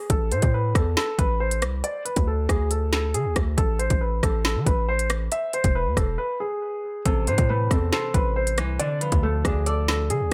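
This menacing drill cut moves at 138 BPM in 4/4 with a half-time feel, its drum kit of hard-clipped kick, woody snare, rim click and crisp hats sitting up front and punching through from 0.1 seconds. A hard-hitting 808-style bass, sine-based with a noise layer and a fast attack that decays, anchors the low end between E1 and E3. A dark, mellow baby grand piano carries the melody in A harmonic minor, its worn, long-sustaining tone softened by a low-pass filter and trailed by tape echo. The harmony moves from Am through D5, A5 and E before returning to Am and Dm, with a short break from 6.2 to 7.1 seconds. At 7.1 seconds a fingerpicked Celtic harp enters as filtered, ringing accompaniment beneath the piano, and light studio reverb lends the ominous excerpt a sense of space.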